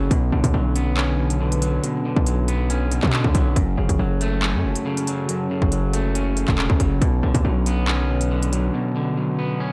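A slightly broken-up, twangy electric guitar and a saturated, distorted 808-style bass open this cold, menacing half-time drill excerpt at 139 BPM. An electronic drum kit with a hard-clipped kick, crisp hi-hats and handclaps joins them almost at once, with guitar, bass and drums all up front. Behind them, a deep, detuned sawtooth pad with chorus and phaser holds moody chords from Bmadd9 to F#m and back, and the bass and drums drop out around 8.7 seconds for a short break, leaving guitar and pad in a dry, gritty digital ambience.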